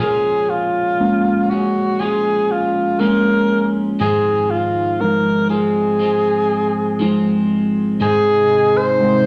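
A clear alto saxophone sings the melody up front from the start, its soft attack, vibrato and scooped notes giving this slow, straight 60 BPM pop piece in Bb minor a longing, melancholic jazz-tinged voice. Beneath it a worn, slightly out-of-tune tine electric piano carries the accompaniment while a compressed, picked twelve-string electric guitar plays arpeggios over the move from Bbm7 to Fm7/Ab. At 8.0 s a shimmering, retro pulse-width pad with chorus slips in behind with sustained chords, all set in a wet, large studio reverb in this brief cut from a longer piece.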